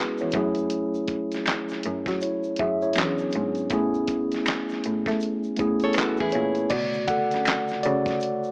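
A mellow tine electric piano sits up front in this introspective, late-night neo-soul and R&B cut, taken from a longer piece in B dorian at 80 BPM with a swung sixteenth-note feel. It carries chords moving from F#m9 through E13 and Amaj7, then takes a clean, direct solo over a Bm9 from 6.7 seconds. Beneath it, a single bowed cello holds the bass line with a smooth, even tone and light vibrato. A dusty, sampler-style drum kit drives the groove with a thumpy kick, a fat snare, gritty compressed hi-hat, handclaps and crash cymbal. A saturated tube shaker and finger snaps sit in the background. At 5.8 seconds a fingerpicked nylon-string guitar steps forward briefly with fresh strings, a full-bodied classical depth and audible finger squeak. The whole mix has light reverb and small-room ambience, filtered through an AM radio character.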